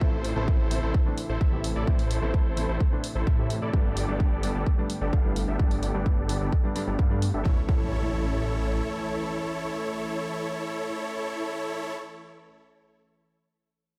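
Light reverb and a digital ambience give this powerful, emotional festival progressive house excerpt a polished, spacious sheen. At 129 BPM in a straight 4/4, a punchy, up-front electronic kick drives the track with a layered hi-hat, while a thick, detuned saw bass with chorus and tube saturation pumps against the kick until 8.8 seconds. Huge, bright supersaw chords carry the riff through sidechain pumping, a low-pass filter and digital delay, with a filter sweep across the first 7.5 seconds. Behind them sit a worn, present baby grand piano with long sustain and delay, and a warbling, vintage unison pad that fills the background with slow-attack, full-bodied chords. The harmony moves from A minor to Gadd9 and lands on A major at 7.5 seconds, around when the drums fall away, and a very quiet electronic impact enters at 7.6 seconds.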